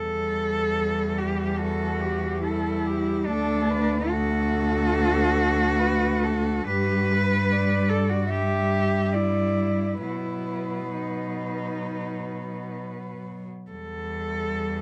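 This classical excerpt is a lyrical piece for cello ensemble in E minor, moving at a rubato 64-77 BPM in 4/4 with a yearning, elegiac mood. A dark-toned solo cello carries the melody from 1.6 to 13.2 seconds, played close and expressively with vibrato and portamento in its upper register. Beneath it, a second cello sings a focused, smooth-topped second line with vibrato, set up front. A third cello supplies an intimate, airy accompaniment played sul tasto with soft attacks and light vibrato, giving it a warm, hushed quality. A rich, focused cello anchors the bass with vibrato, while light reverb surrounds the ensemble as the harmony moves through Em, D, G and B before settling back on Em.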